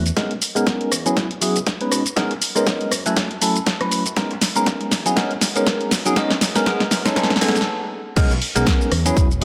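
A bell-like tine electric piano sits up front in this sunny, feel-good slice of filtered disco house, its bright, clean chords colored by phaser, a low-pass filter and sidechain pumping over a swung groove. Beneath it, a fingered electric bass stays in the background with a warm, direct tone, shaped by high-pass and low-pass filters and pumping with the same sidechain motion. A punchy analog drum machine brings hi-hat, shaker, rim click, snare and crash cymbal, re-recorded in a large room, while a layered, overdriven electronic kick adds weight. The opening passage is a long build-up with a drum fill and a filter sweep running through it, moving between lush major and minor seventh-style chords. A brief stop arrives at 7.7 seconds before the drop lands at 8.2 seconds, bathed in a moderate plate reverb as the piece carries on past its cut.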